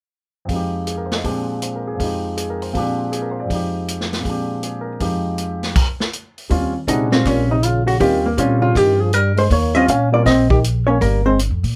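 Warm and relaxed, this excerpt from a longer piece is small-group swing and bop at 160 BPM in 4/4, with a lilting swung eighth-note feel centered on Eb mixolydian. A polished, present grand piano opens at 0.5 seconds alongside a small-room vintage drum kit with dark cymbals, a medium-tuned snare, a punchy kick and a rolled-off top, comping over an alternating Fm9 and Bb13 vamp before a brief break with the chords dropping out. At 6.5 seconds the harmony settles on Eb13 as a woody upright bass with steel strings enters up front, plucked and sitting a touch louder than the piano. Moments later a dark, clean hollow-body electric guitar carries the melody, fingered and compressed, while a mellow trombone with light vibrato, scooped notes and a smooth top adds a second line beneath it. The piano drops out at 10.3 seconds, and the whole ensemble is framed by light reverb.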